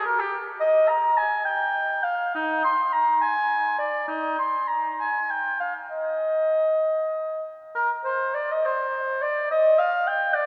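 Set in a 6/8 that moves at 64-72 BPM by the dotted quarter, the rhythm bends freely in a rubato that lets each phrase breathe. This is a classical, baroque-style fantasia in Eb major for solo oboe, cut from a longer piece, and its mood is flowing and radiant. The oboe plays alone and up front for the full 10.5 seconds, ranging from Eb4 to C6 with a mellow, roomy tone. It sounds distant, heard from further back in a cathedral whose wet reverb, with an RT60 of 4.3 s, lingers around every note. The opening idea runs until about 7.8 seconds, when a contrasting passage takes over and carries the oboe to the end of the excerpt.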